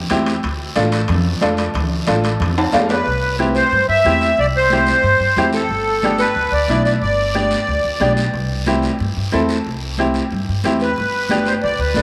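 Soaked in a lush spring reverb, this sunny, festive cumbia excerpt moves at a brisk 182 BPM in C major, with a woody pizzicato upright bass on steel strings and a bright, slightly detuned upright piano carrying the Dm, C and G harmony. Distant, high-tuned congas with soft hands and a raspy guiro drive the groove, while ringing metal-shell timbales with a vintage, band-limited tone play until 3.0 s, closing the opening section with a piano and drum fill. A sweet, reedy accordion with a light tremolo tuning enters at 2.9 s, close-miked, dry and up front, and returns at 10.8 s.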